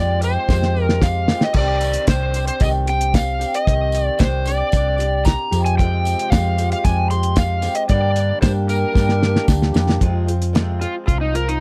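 An overdriven slide guitar carries a wistful melody over a boxy, picked ladder-braced acoustic guitar with audible finger squeak, a reedy, breathing harmonium holding chords in the background, and a round, dark hollow-body bass, opening this reflective folk rock and heartland rock excerpt at a straight, mid-tempo 113 BPM in 4/4. At 0.2 seconds a cloth-damped, thuddy drum kit with a fat snare, tight kick and dark cymbals joins up front alongside a jingly tambourine, with drum fills near the start and just before the 10-second mark as the harmony moves through minor chords. The harmonium stops at 10.0 seconds as the slide guitar takes a short solo, all captured in a dry, close 1970s-style studio sound with little reverb.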